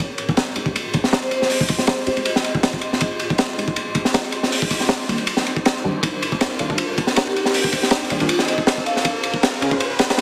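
Raw and dark, this drum and bass excerpt with a jungle edge moves at 159 BPM in F minor, lightly swung, cut from a longer piece and built entirely as a build-up over chords of Fm9, Cm9 and Bbm9. A crunchy breakbeat kit sits up front, saturated and gritty, with a punchy kick, a high-tuned snare, dusky cymbals and a rolled-off top, its hi-hat and ride shaded by high-pass filtering. Behind it, an ethereal pad holds sustained chords with detuned unison, a moving notch and ensemble chorus, while a faint, breathy wind-like noise texture hovers high above from 0.3 seconds. Muted, deep dub chord stabs with chorus and dub echo pluck through a filter sweep that runs across the whole passage. A ringing, metallic vibraphone with medium mallets and fast motor vibrato drifts in the background with brief melodic phrases carrying 12-bit sampler grit and echo, and a very quiet electronic riser joins at 3.2 seconds. 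The mix is dense and heavily limited, set in a small digital room with a 1.3-second reverb tail.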